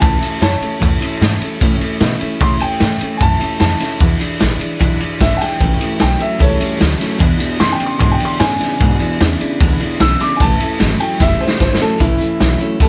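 Rowdy and upbeat, this straight-feel rockabilly excerpt in A major at 150 BPM features an upright piano soloing across the section, its woody, boxy tone carrying audible action noise and long sustain over a full-bodied, picked dreadnought acoustic guitar and a thumpy, dark pizzicato upright bass on gut strings. A gritty, saturated garage drum kit sits up front with a punchy kick, a medium-tuned snare, hi-hat and ride cymbal, then adds a fill at 11.2 seconds. A twangy, slightly broken-up electric guitar riff through a small old amp enters in the background at 5.6 seconds, as light reverb rounds out the sound and the chords move between A and E7.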